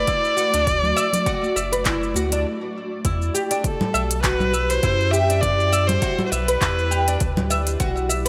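A rich, smooth bowed kamancheh sings up front with vibrato and portamento through tape echo over woody oud arpeggios, a cloudy granular pad pumping in the background, round sub bass, a punchy kick and a crisp, overdriven kit with congas, giving this earthy, meditative organic downtempo excerpt its brief break from 2.5 to 3.0 seconds before the shift to Em7.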